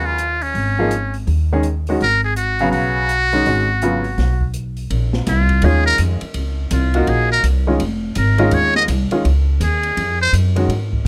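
Closely miked and nearly dry, this brief cut from a longer modal jazz piece in Bb phrygian swings at 166 BPM with a hypnotic, cool mood, moving from Abm11 to Bbm11 at 4.9 seconds. Up front, a metal-muted trumpet carries the melody with a buzzy, thin tone, light vibrato and scooped notes, stepping into a solo at that change, while a bright, slightly detuned upright piano with short sustain accompanies it. A woody, dark pizzicato upright bass anchors the bottom, and a softer acoustic drum kit adds ride, hi-hat, a medium-tuned snare and a boomy kick.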